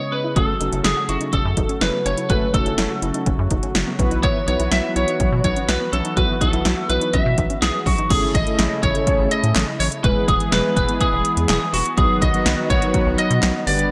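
Synth-pop with a nostalgic, wistful mood, this excerpt pairs a bright, twangy, lightly driven lead guitar melody with bold brassy pad chords, a soft round pluck arpeggio that plays until 8.1 seconds, mellow synth brass, a rubbery square bass and a punchy deep house drum kit with gated reverb, all set in a lush hall within a bright 1980s-style digital production.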